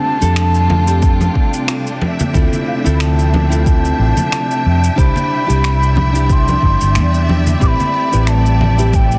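A growly fretless electric bass sits up front with lush chorus, entering at 0.2 s beneath a mellow, hollow wooden flute melody with delay in this wistful sunset chillout excerpt at 91 BPM in a swung 4/4. Fingerpicked nylon-string guitar with audible finger squeak and digital delay, a rich bowed string section with vibrato, and a dark, breathy wind-like noise texture in the background move through F69, Dm9, Cmaj9 and Am9, while a deep, overdriven electronic kick from 1.0 s, layered electronic shaker and finger snaps, and ringing, close congas played with hard hands fill out the rhythm. The dense, heavily limited master sits in small room ambience.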